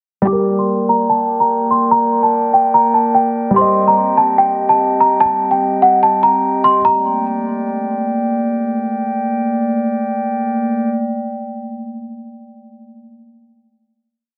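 A small-room recording with light reverb and a dulled, filtered top opens this cold, menacing half-time hip hop piece in G minor at 146 BPM, where a bell-like celesta loops a sweet up-front melody over held, spread chords from a dark baby grand with audible action noise and a glassy glass harmonica pad, moving from Gm to Cm/G under a filter sweep before the piano stops at 6.8 seconds and the harmonica sustains a final Gmadd9 until 10.9 seconds.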